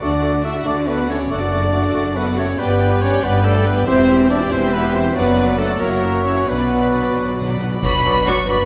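A present French horn section holds sustained chords at the front of this stormy, dramatic fragment from a fast romantic symphonic movement in 6/8. Above it, a violin section with light vibrato carries a smooth melody, while a lush second violin section, an airy flute group, and a distant oboe and clarinet fill in lines over a mellow bassoon and rich bowed violas, cellos and double basses. Timpani struck with medium mallets sound briefly at 1.3 seconds and return with a fill at 6.5 seconds, before dark clash cymbals and concert bass drum land a full-orchestra accent at 7.8 seconds, all carried in a wet scoring-stage reverb.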